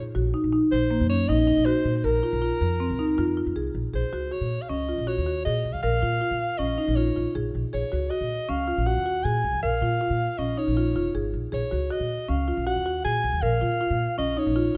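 Contemporary instrumental music in an urgent, hypnotic mood, cut from a longer piece and set in an odd 5/4 metre with a straight feel. A breathy, bright soprano saxophone carries the melody as a jazz-style solo, close-miked and up front, with a light vibrato colouring its line. Beneath it, a pizzicato upright bass with steel strings gives a thumpy, woody foundation that also sits up front, while a marimba played with medium mallets on padauk bars spins smooth, dark arpeggios. The harmony settles into a new pattern at 3.9 s, moving back and forth between Gbadd9 and Bbm chords. The production is dark and warm, with light reverb lending the trio a modest sense of space.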